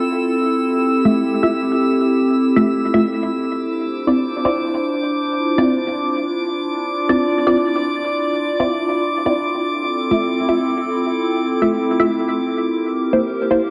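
A warbling, nostalgic tape-like pad sits up front with detuned, slow-blooming chords through chorus and its own reverb, setting a dark, atmospheric drum and bass mood at 159 BPM in D minor. From 1.1 s a muted, filtered dub chord stab joins with deep, decaying plucks through phaser, subtle chorus and dub echo, while a calm, glassy harmonics texture drifts high above throughout. The chords move from Fmaj7 to Dm9 and back, turning to C7 near the close of this excerpt, all bathed in a lush hall reverb with a dark production.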